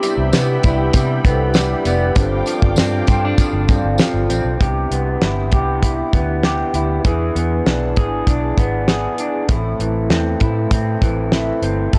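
Indie pop with a bedroom-pop feel, this sunny, dreamy excerpt moves in a straight 4/4 over a dry, gritty cassette-tape sound with little reverb. Up front, a dark, slightly broken-up electric guitar through a small old amp carries subtle chorus and vibrato. Alongside it sit a foam-muted, punchy fingered bass, a lightly overdriven tonewheel organ with its rotary speaker stopped, and a damped 70s kit with a fat snare and tight kick. For the opening seconds a smooth sawtooth analog pad, a jingly background tambourine and a ringing vibraphone with lush chorus and tape echo add sheen, and the pad drops out at 4.6 s as the chords shift from Cmaj7 through E7 to Am.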